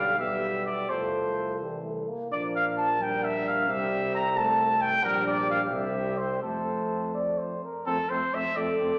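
A roomy, distant recital-hall sound carries this nine-second excerpt of a warm, triumphant classical brass quintet in F major, moving in a rubato 6/8 at about 82-90 BPM, where a punchy, up-front trumpet sings the melody over a mellow flugelhorn second line, a softly attacked French horn with light vibrato and a trombone in accompaniment, and a tuba with vibrato anchoring the bass.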